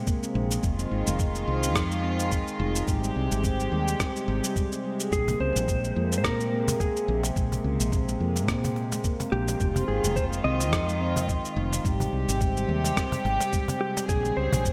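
A swung sixteenth-note groove from a gritty, thumpy sampled kick and compressed electronic cabasa and rim click drives this earthy, mystical organic downtempo piece, with a round, punchy, woody fretless bass up front and a distant bowed string section holding soft, floating sul tasto chords that pump with sidechain compression. A ringing stainless-steel handpan plays meditative arpeggios trailed by delay, and at 5.1 seconds a dark, clean lap steel enters with a slide melody carrying its own echoes, joined at 5.3 seconds by a snappy, close-miked cajon played with soft hands. Lush hall reverb and bright 1980s-style digital production frame this passage cut from a longer work, as the chords move among Bb7sus2, Fm7 and Abmaj7 before arriving on Bbm9 at 14.1 seconds.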